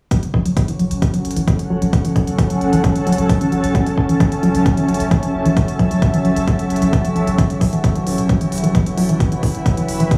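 A lush digital hall ambience surrounds this short cut from a longer piece of driving peak-time techno, set in F# minor at 132 BPM in a straight 4/4 with a hypnotic pull. A punchy, layered electronic kick sits up front with the feel of a small room, joined by smooth electronic hi-hats lower in the mix. A deep, round sine sub bass enters at 0.3 seconds, roughened by overdrive and darkened by a low-pass filter, while a tight sawtooth-and-square synth riff with a detuned filter pluck sits mellow in the background, coloured by chorus, tube saturation and tape echo. An eerie, metallic FM drone with a moving notch fades in at 0.7 seconds, and a cloudy, blurred granular pad in unison slowly evolves above it from 1.0 seconds, both bathed in their own reverb. Sidechain pumping makes the bass, riff, drone and pad breathe as the harmony holds on F#m before shifting to E5 near the end.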